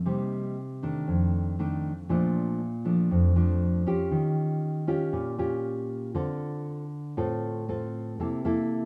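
Sophisticated and sunny, this short bossa nova excerpt at 118 BPM in Bb major features a solo nylon-string guitar, dark and full-bodied with a deep classical character, fingerpicked up front through a wet echo-chamber reverb as it moves from Cm7 and F6 into Bbmaj7, Eb9, Dm7 and C6.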